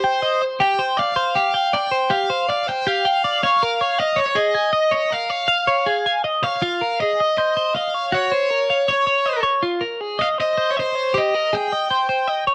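A bright, overdriven electric guitar carries the melody up front, picked between C5 and G5 with a slapback echo trailing each note. Alongside it, a clean, compressed twelve-string electric guitar picks arpeggios from F4 to Ab5, also up front and touched with a subtle chorus. This restless, wistful rock passage, cut from a longer piece, moves at 159 BPM in a straight 4/4. The harmony begins on a rootless Abmaj7 and passes through Eb9sus4; at 6.6 seconds a second section turns to Fm7, Gb5 and Dbmaj7 before returning to Abmaj7. The sound is a dry, close 1970s-style studio recording with a digital ambience.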